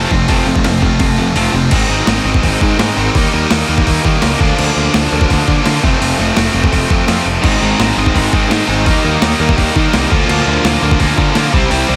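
A gritty, sampler-style drum kit sits up front with a thumpy kick and high-tuned snare, driving a rowdy, rebellious punk rock cut at 168 BPM, its kick and snare dropping out briefly at 1.4 seconds before returning. Two overdriven electric guitars play bright picked riffs through an F, Ab, Eb and Bb/D progression, one of them double-tracked in the background, while a growly fuzz bass holds down the low end. A tight distorted third guitar sits further back, returning at 7.4 seconds, all under light reverb in a dense, heavily limited mix cut from a longer piece.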